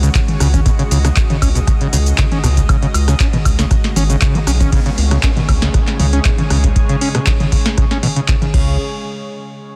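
A straight 4/4 acid house groove at 118 BPM, built on a deep, up-front electronic kick and a booming analog drum machine whose tonal snare, claps and metallic hats sit in a short room, alongside crash, rim click, shaker, toms and woodblock. A squelchy, resonant overdriven acid bass riff with tube saturation, tape character and dub echo rides over a round, dark analog bass, while a lush, detuned unison pad holds bright sustained chords, both basses and the pad pumping against the kick. The cut opens on a drop and is trippy and gritty throughout, with a very quiet downlifter entering at 4.8 seconds, just after the second section begins, all in a dense, heavily limited digital mix.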